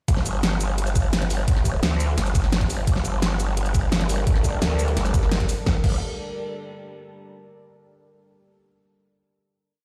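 A growling, saturated bass wobbles up front through this aggressive, tense piece of dark technical drum and bass, driven by a knocking kick and tight drums with a huge snare and bright hats, while a deep, detuned ambient pad drifts in at 3.6 seconds before a band accent at 5.3 seconds and a final chord, all heard in a stone room on a big sound system.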